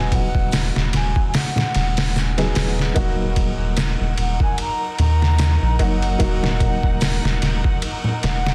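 Trip hop at 74 BPM in Eb minor with a hypnotic, dark, swung 16th feel, where gritty, pitched-down sampler drums with a thumpy kick sit up front in a large room over a round, deep dub sub bass with tube saturation, while a woody upright piano with harmonic tremolo and tape echo, soft-handed congas and tube shaker in the background, and a distant, breathy wooden flute melody soaked in dub echo drift above, joined at 3.0 s by a veiled, con sordino violin section holding bowed chords, all within a dense, heavily limited master dusted with vinyl crackle.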